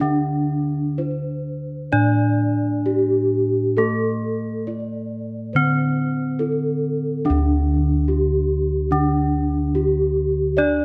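Round, beating bossed gongs anchor this serene, shimmering Javanese gamelan excerpt in the bass, their bronze tone mellow and soft under padded beaters. An airy metallophone carries the melody with ringing, paired-tuned shimmer and a slapback echo, while a second bronze metallophone struck with a horn mallet adds bright accompaniment beneath it. The three up-front parts sit in light reverb in a straight 4/4, moving into a new section at 7.2 seconds.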